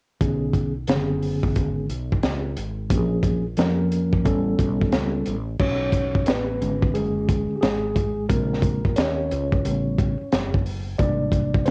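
A clean, up-front mellow tine electric piano with a cassette-tape tint anchors this cool, swung jazz-hop cut from a longer hip hop piece, moving from accompaniment into a solo at 5.6 seconds over a crunchy, saturated breakbeat kit with a high-tuned snare and dark cymbals and a growly, round fretless bass, all in a lightly reverberant home-cassette sound.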